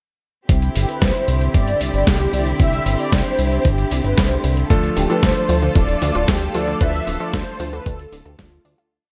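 The overdriven electronic kick drum stands out most, a gritty, thumpy four-on-the-floor pulse that drives this sunny, romantic italo disco piece at 114 BPM in C major. Around it, a sampler-style kit with a medium-tuned snare and open and closed hats plays a disco machine beat, overdriven and washed in gated reverb, while a glossy, nasal chorused synth bass pushes eighth notes up front. A rich, bowed string section holds smooth sustained chords with a vintage 12-bit grit, and a dark, detuned synth brass carries hook phrases from 0.8 seconds, colored by chorus, phaser and delay. At 4.7 seconds, as the harmony moves from Cadd9 to D minor, a round analog pluck sequence enters in the background and a clangy electric grand piano adds held chords with syncopated pushes. The whole short piece sits in light digital ambience and fades out from 6.1 seconds.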